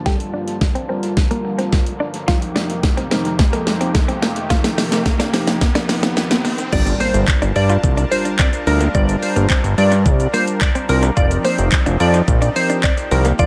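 Bittersweet and driving, this dance-pop excerpt in a straight 4/4 moves between Gm7 and F7sus4 chords through a build-up and a drop. A soft, detuned supersaw holds sustained chords in the background with phaser, sidechain pumping and a low-pass filter, while a mellow tine electric piano adds background accompaniment through analog chorus and tape echo. A clean, direct-recorded electric guitar plays a picked, compressed riff, and a very quiet riser and impact sit in the mix from 0.8 to 8.9 seconds. The pop drum kit sits up front with a knocking kick, fat snare, bright hats, handclaps, shaker and crash, re-recorded in a large room, and the opening build carries a drum fill and filter sweep. At 6.7 seconds the drop arrives with a fat, saturated sawtooth bass pumping up front and a glassy, crystalline wavetable pluck melody that warbles with ring modulation, chorus and tape echo. Light reverb gives the whole an echo-heavy sheen.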